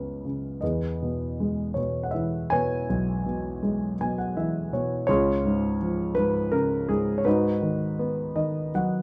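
A dark, worn grand piano sits up front with audible action noise and short sustain, playing a reflective, lyrical classical solo in a rubato 3/4 through light reverb, with fills at 3.6 and 8.0 seconds in this intimate fragment cut from a longer piece.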